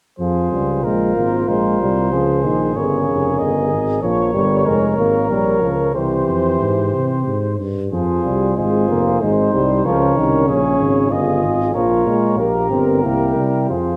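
Classical brass quintet in F minor at 94 BPM in a rubato 3/4, grave and heroic, all five players sounding together from 0.2 to 14.0 seconds in this fragment of a longer piece. A mellow trumpet with light vibrato carries the melody over a flugelhorn second line that also has light vibrato and sits distant and roomy, while a French horn and a trombone with vibrato fill the accompaniment and an up-front tuba anchors the bass. The harmony moves through Fm, Db, Bbm and C before closing on a C7, all bathed in a recital hall's 1.5-second reverb.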